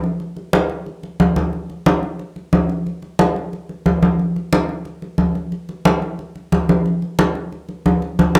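This jazz clip is a short, sophisticated and danceable passage at a brisk 181 BPM in a straight 4/4 feel, carried entirely by congas. The medium-tuned, ringing drums are struck with soft hands and sit up front in a live room, caught by close, detailed microphones with a generous wash of reverb. A fill arrives at 8.2 seconds, just before the 8.4-second cut from the longer piece.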